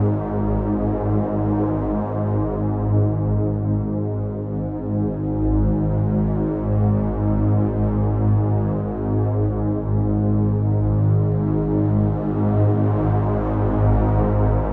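A swarming drone holds the whole of this ambient fragment alone, sounding from 0.0 to 14.7 seconds in free time and sitting low, between G#1 and G#2, with a tuning of A4 = 441 Hz. Its tone is tense and granular, built from detuned sine voices in unison that give it a restless, shifting quality as it evolves. The sound opens with a slow attack, sustains at length and trails off through a long release, carried by its own built-in reverb and a tape echo. Though the drone stays up front, it is set within a wet cathedral reverb with a six-second decay, so the whole recording feels like it was captured in a vast, echoing space. The mood is ominous and immense, and the passage is cut from a longer piece.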